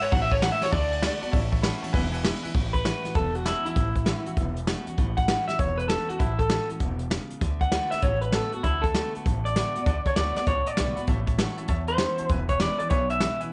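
Rockabilly at 197 BPM in A major with a swung, retro and rowdy feel, this excerpt opens with a twangy, slightly broken-up electric guitar solo through a small old amp with tape echo that carries the melody up front throughout, over a brush drum kit with a boomy kick, a woody, thumpy pizzicato upright bass and a full-bodied picked dreadnought acoustic guitar in the background, while a brilliant upright piano with short sustain plays until 2.5 seconds and returns at 9.9 seconds, all in a light studio reverb.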